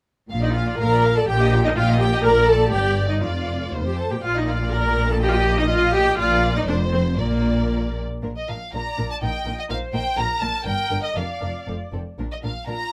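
An up-front chamber viola section carries the accompaniment in this lively, graceful excerpt from a quick classical-period movement for string orchestra with a rubato feel, as a lush, expressive violin section sings the melody over a smooth, even second violin line, while a warm cello section and a distant double bass section share the bass, all captured by close, detailed microphones in light reverb.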